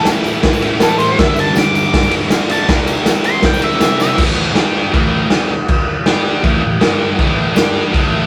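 A thick, double-tracked fuzz guitar sits up front with a bright, distorted riff that runs the whole 8.3 seconds of this rowdy, raw garage rock excerpt at 160 BPM in a straight 4/4. A darker octave-fuzz lead guitar carries the melody over it for the first half, dropping out at 4.2 seconds as the second section begins and the chords shift quickly between A5 and G5. The acoustic drum kit is punchy and gritty, its medium-tuned snare and kick heard in a bright stone room with a rolled-off top, saturated and up front, with crash and ride cymbals in the mix and a fill at 4.0 seconds. A jingly tambourine sits very quiet in a small room, mostly through the first half and again briefly at 7.6 seconds. The whole take has the rough feel of a rehearsal-room recording, with light reverb and warm saturation.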